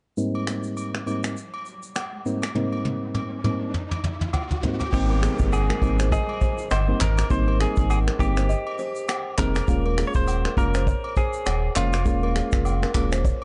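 A bright, twangy clean electric guitar carries the melody from 4.9 seconds, its picked, compressed notes trailed by digital delay, in this joyful, romantic afrobeats excerpt. Before it arrives, mellow, warbling electric-piano-like synth keys with chorus open the track under a filter sweep, while a background riser builds and a drum fill leads into the fuller section. The soft brush kit sits up front with a tight kick, hi-hat, rim click, shaker, finger snaps, handclaps, toms and crash in a swung sixteenth-note feel, and distant agogo bells and woodblock add light percussion. Alongside the guitar comes a deep, full sub bass with octave, and a woody, ringing kalimba riff with its own delay joins at 5.1 seconds. The harmony moves from Abmaj7 to Eb7sus4 within a small room ambience and a dark, warm production.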